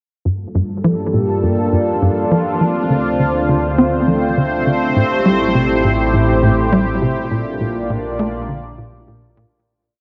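Hypnotic and mysterious, this short ambient space-music piece at 102 BPM sets a bright, detuned resonant pad of sustained Gm9, Dm7, Am7 and Bb6 chords up front over a tight, punchy sequencer bass riff whose ring-modulated 5-step loop drifts against the bar under a filter sweep, while a nasal, pulse-width-modulated analog drone enters at 0.8 s beneath them, all bathed in a vast cathedral reverb and fading out from 6.5 s.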